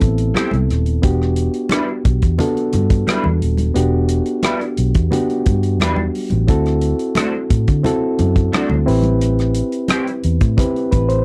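A twangy electric guitar through a small old amp, slightly broken-up and thickened by ensemble chorus, carries a bright riff from 0.3 s to 10.1 s in this short excerpt of lush 1970s-style soul in E minor at 88 BPM, bittersweet and silky in mood. Alongside it, a reedy, lightly overdriven electric piano, a dark, foam-muted fingered bass with a round, punchy tone, and a tight-kicked soul drum kit with hi-hat and rim click sit up front, while ringing congas played with hard hands stay in the background. The chords move from Am7 to Em7, D7 and back to Am7, all captured in a dry, close 1970s-style studio sound.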